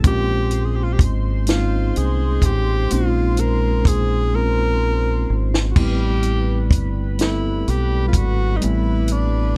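A breathy tenor saxophone carries the melody in a jazz style, with light vibrato, scooped notes and a smooth top, over this slow, yearning and sultry 6/8 R&B groove at 42 BPM. A mellow tine electric piano plays clean accompaniment chords with a warm, built-in-speaker tone. Up front, a deep, round fingered electric bass sits low in a dub style, paired with a compact, dry acoustic cocktail drum kit: punchy kick, high-tuned snare, hi-hat and dark crash cymbal. Behind them, a chorused pulse-width pad holds sustained, shimmering retro chords with a soft attack. The harmony rests on Bbm9 before a drum fill from 4.3 to 5.8 seconds leads into Am9. The sound carries little reverb, and the passage is cut from a longer piece.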